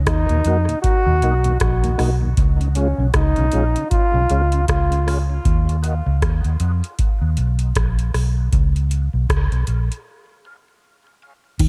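A swung sixteenth-note feel at 78 BPM in 4/4 drives this spacious, hypnotic dub reggae piece, cut from a longer work. A booming analog drum machine sits up front with a deep kick, metallic hi-hats, rim clicks and crash cymbal, its sound tape-warm. The dark, round, foam-muted fingered electric bass holds the low end, while a tonewheel organ stays in the background with chorus vibrato, key click and a slow rotary speaker, filtered and trailed by dub echo over Ebm and Db. A punchy trombone with vibrato and a smooth top carries the solo second line until 5.3 seconds, its high-passed tone fed into dub echo, before a break that runs to 11.6 seconds under a long filter sweep. At 11.6 seconds a clean, mellow electric guitar plays a single echoed Eb note, all within a dark production bathed in digital ambience.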